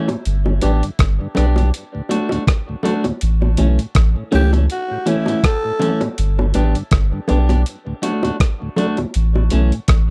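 A deep, round dub sub bass sits up front in this laid-back roots reggae excerpt at 81 BPM, moving through a G, D and A progression in A mixolydian with a swung sixteenth-note feel. A gritty, compressed sampler-style drum kit with a thumpy kick, hi-hat and rim click sits close beside it, its sound re-recorded in a large room. A clean, picked electric guitar with vibrato and dub echo plays alongside a mellow, dark tonewheel organ, whose key click and slow rotary speaker hang in the background with their own dub echo. Low-tuned vintage bongos played with soft hands add a band-limited, acoustic patter. At 4.3 seconds a raspy alto saxophone steps in for a brief solo phrase with clear vibrato and dub echo, ending by 6.0 seconds. The whole piece carries the dry, close sound of a 1970s-style studio with little reverb.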